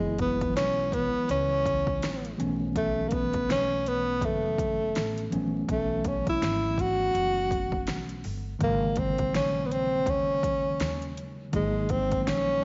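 A breathy tenor saxophone opens this nocturnal, cool jazz-hop excerpt up front with subtone, light vibrato and scooped notes, over a mellow tine electric piano voicing suspended ninth chords and a woody pizzicato upright bass with tube saturation. At 0.2 seconds a layered, produced, overdriven deep house drum kit joins with a punchy kick, fat snare and metallic hats in a swung groove. An echo chamber reverb and vinyl crackle give the sound a dark, muffled top end.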